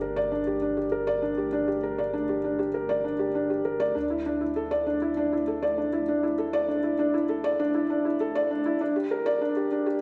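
This melancholic, intimate fragment of a longer piece sits in a wet recital hall reverb with a 1.5-second tail, high-pass filtered, which gives it a lingering sense of space. It is piano and strings electronica at 99 BPM in a straight 4/4, tuned to A4 = 441 Hz, and it unfolds as a build-up. A felt-muted upright piano carries the riff up front, its tone mellow, dark and boxy, with the audible noise of its action and a digital delay trailing its notes between D4 and D5. Beneath it, a round sine sub bass with a fast attack holds sustained low notes from G1 to D2, kept deep in the background. The harmony moves from Gm to Dsus2 at 4.0 seconds and returns to Gm at 8.8 seconds.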